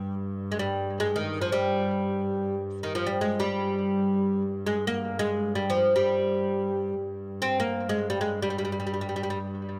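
An oud and a bowed double bass sound together from the start of this brief, free-time Arabic maqam passage in maqam kurd on G, its mood hypnotic and longing. The fretless oud sits up front, bright and woody with the ring of its double strings, carrying the melody between Eb3 and C4 through tape echo until 9.4 seconds. Beneath it, a single distant bass holds a smooth, even drone on G2 with vibrato, and the close, detailed recording places both in a lightly reverberant room.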